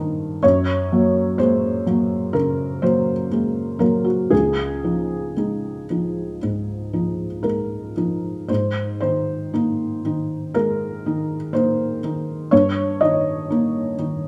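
A close, boxy piano sound sits up front in a moderate, roomy studio reverb, with the soft clatter of the instrument's action clearly audible. This peaceful, intimate fragment of neoclassical minimalist piano features a felt-muted upright playing alone in a loose, rubato 4/4, its dark, mellow tone spanning low bass notes to the upper middle register. Over about 14 seconds it moves through gentle added-ninth chords, Gbadd9, Dbadd9 and Abadd9, before settling on Eb/G at 12.5 seconds.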